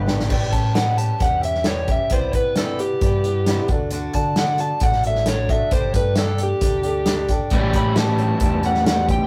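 Warm and open-road, this rough rehearsal-room folk and heartland rock excerpt opens with a short drum fill before a dark, overdriven slide guitar takes the solo from 0.3 seconds over boxy picked parlour acoustic guitar, a round amped fingered bass and an up-front small-room kit played with bundle sticks and a punchy kick, while a bright, double-tracked crunchy electric guitar riff sounds briefly at the start and returns at 7.5 seconds, all set in moderate studio reverb.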